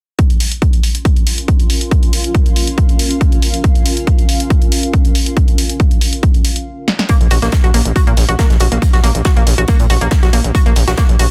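A straight 4/4 pulse at 139 BPM drives this dark, intense stretch of peak-time techno in Bb minor, cut from a longer track and anchored by a heavy, layered, overdriven electronic kick sitting up front. A punchy analog drum machine adds tape-warm hi-hats and snare, its hats pumping against the kick. From 1.3 seconds a granular cloud pad drifts in over a Bb minor chord, blurred, detuned and evolving, with a moving notch and its own reverb giving it a shadowy haze. The pad drops out at 6.7 seconds for a brief stop, punctuated by a drum fill, before everything shifts into a harder second section at 7.1 seconds. There a gritty, aggressive sawtooth bass with oscillator sync and a resonant filter pluck pumps up front, an analog pluck riff with ring modulation, a filter sweep, chorus, tube saturation and digital delay adds a round, bright edge, and a high-passed acoustic studio kit with a medium-tuned snare sits in the background. 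The small room ambience and dense, heavily limited master keep the sound tight and loud.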